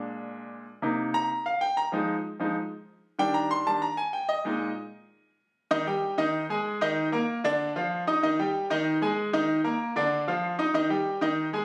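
A brilliant, up-front grand piano carries this joyful, danceable Latin clip alone from 0.0 to 11.6 s, its natural tone and short sustain ringing from low Bb2 up to Eb6. The opening phrase moves through Bb7, Cm7, Fm7 and Ebmaj7 before a new section at 5.7 s circles Eb, Ebsus4, Bbadd11 and Dm. Captured on a phone in the room with moderate studio reverb, it is cut from a longer piece.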